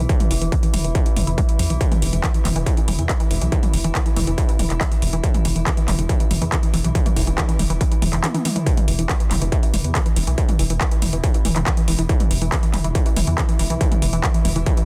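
Driving and relentless, this cut from a longer piece of peak-time techno runs at 140 BPM in a straight 4/4, with a distorted electronic kick sitting up front and a layered techno kit adding handclaps, metallic hi-hats and toms. Beneath it, a thick, menacing detuned saw bass sits low, its beating, saturated sawtooth body pumping through sidechain compression. A tight, nasal sequenced synth riff sits in the background, its plucky filtered tone colored by chorus, tube saturation and tape echo, while a filter sweep moves across this arpeggio throughout. Further back, an eerie, inharmonic FM drone with a slow attack and long release hovers in its own built-in reverb and chorus, also ducking with the pump. A brief drum fill at 8.2 seconds breaks the pattern before the groove carries on, all held in a dense, dry, heavily limited modern master.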